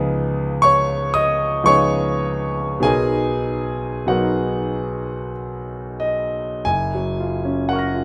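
A clear concert grand piano with deep bass and long sustain sits up front in this luminous, serene fragment of impressionist solo piano, unfolding in a rubato 3/4 at 41-64 BPM in F# major, moving from C#9 to Bmaj7 at 2.8 seconds and settling on F#maj7 at 6.7 seconds within light reverb.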